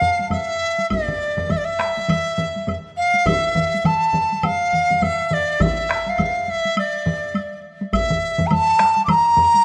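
A breathy, mellow dizi with a buzzing membrane carries the melody up front from the start, over close, dry taiko struck with hard sticks and more distant taiko played with heavy sticks in a large room, one of them sitting in the background. This is a driving, ceremonial Japanese taiko ensemble piece in 4/4 at about 103 BPM, with a swung sixteenth feel that gradually speeds up. A woody, close woodblock joins at 0.3 seconds, and the excerpt, cut from a longer piece, is bathed in a lush hall reverb within a rough home-demo mix.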